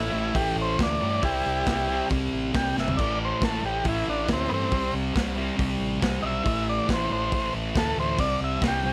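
A buzzy, overdriven combo organ takes a solo from the first second, its heavy vibrato sitting up front over a thick, double-tracked fuzz guitar riff and a round, amped fingered bass in this raw, swaggering garage rock excerpt in A minor at 138 BPM. A crunchy breakbeat kit enters at 0.3 seconds with a tight kick, dark cymbals and a gritty, rolled-off top, throwing in a fill at 2.8 seconds, while the chords move between A and C under light reverb in a small-room sound.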